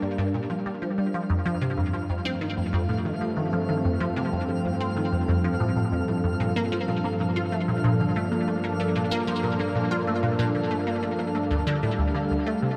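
Mysterious and expansive, this cut from a longer ambient, sequencer-driven space music piece moves at 94 BPM in straight 4/4 over Gm, F, Bbmaj7/G and Dsus4, with a squelchy, juicy blip pluck riff treated with phaser, ensemble chorus and delay sitting up front beside an airy, detuned sawtooth pad holding sustained chords with chorus and a slow filter swell, while a sparkling FM granular texture with octave-up shimmer fades in throughout, the whole set inside a huge ambient reverb with a 7.6 s tail.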